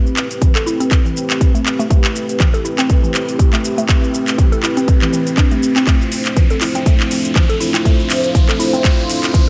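Lightly reverberant, this spiritual afro house build-up sets a deep, moody analog pad with sidechain pumping beneath woody, FM mallet-like plucks playing arpeggios through chorus, phaser and digital delay, while mellow, detuned synth brass stabs carry a filter sweep, a punchy, up-front electronic kick arrives at 0.4 s over a tape-warm house kit of handclaps, metallic hats, shaker and toms, and a background riser enters at 1.1 s as the chords move from Am7 to Dm7 at 5.9 s.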